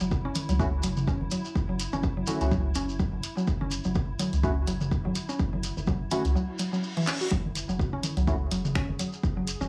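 Clinical and sparse, this minimal techno excerpt moves at 125 BPM in F# minor with a light 16th-note swing, built over a single F#7(no3) chord as a woody, mallet-like synth pluck riff with chorus and tape echo sits up front beside a punchy, tape-warm electronic kick, while a rubbery, tube-saturated square bass and a swarming, detuned drone pump under sidechain. A grainy shekere, a garage kit of finger snaps, handclaps and hi-hat, overdriven electronic toms in the background, and hollow organ stabs with analog chorus and delay fill out the groove. A reverse cymbal rises from 6.6 seconds into a drum fill at 7.1 seconds, and the whole mix carries a dry, gritty hardware character with light reverb and small-room ambience.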